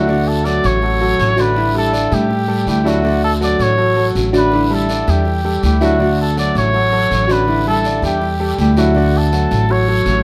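A cup-muted trumpet sings a soft, veiled melody with vibrato from the first moment, its jazz-style line sitting up front in plate reverb over fingerpicked nylon-string guitar, clear piano arpeggios with long sustain, and a woody, thumpy pizzicato upright bass. This sunny, warm excerpt of Cuban son and guajira moves at a brisk 162 BPM in D major, rocking between Dmaj7 and A7sus4, while a raspy guiro enters at 0.1 seconds, sounding distant as if in a large room. Close, detailed microphones catch the guitar's finger squeak and the gut-string bass in a moderate studio space.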